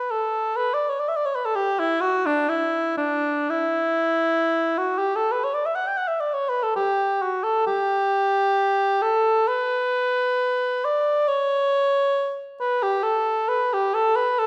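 A dark, close-miked sound sits in a recital hall with a lush reverb of 1.6 seconds. A solo cor anglais carries this lyrical, serene classical passage alone from start to finish at 14.5 seconds. It moves in a free, expressive rubato around 57-70 BPM in 4/4 and sings up front with a warm tone between D4 and G5 in this short section taken from a longer piece.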